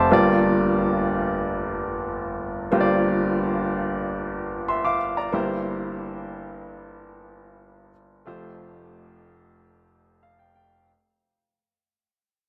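A solo concert grand piano opens this short pop excerpt in free time, its clear, intimate tone placed up front with audible action noise and a deep bass register reaching down to F1 and up to D6. The mood is uplifting and glossy, set in F major with the instrument tuned to A4 = 438 Hz. The harmony moves from Gm7 to C7/G and settles on Fadd9, each chord ringing with long sustain inside a moderate plate reverb. The whole passage plays under a fade-out, and a brief piano fill arrives at 9.9 seconds before the clip ends at 10.9 seconds. The polished, present sound keeps the attention on the piano's resonance in this passage cut from a longer piece.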